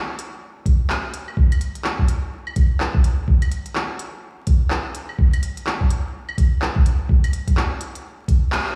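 The recording sits in a stone room with light reverb and a faint vinyl crackle, as if played on a big sound system in a bare room. This short future garage fragment, cut from a longer piece, moves at 126 BPM in 4/4 with a 60% swing on the sixteenths, and its mood is wistful and ghostly. An organic electronic drum kit of claves, handclaps and crisp hi-hats enters at 0.2 s, its produced sound re-recorded in a small room. From 0.7 s a sampler-style electronic kick joins up front: compressed, pitched down and muffled, with a tape-warm thump. The whole band lands an accent at 8.5 s, just before the fragment ends.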